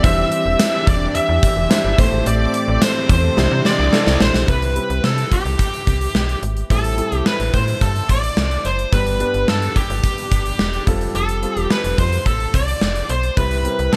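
A mix with light reverb and a small-room feel opens this uplifting, romantic slice of 1980s-style pop, cut from a longer piece. Up front, a smooth overdriven electric guitar carries the picked melody, while a very quiet, lush violin section with vibrato traces a second line high above it. A warm concert grand piano, intimate enough for its action noise to come through, provides accompaniment with deep bass. Underneath, a slap-like FM bass with a snappy, metallic attack drives alongside a punchy gated drum kit of kick, medium-tuned snare, hi-hat and tambourine set in a bright stone room. For the first 4.5 seconds, a swirling phased analog pad holds sustained chords and dark, rounded synth brass with chorus adds stabs in the background, a passage closed by a drum fill from 3.4 seconds. The harmony moves from Cadd9/E through Am7 and Cadd9, then the next section opens on Cmaj7 and passes through Am7, G and Fadd9 before returning to Cmaj7.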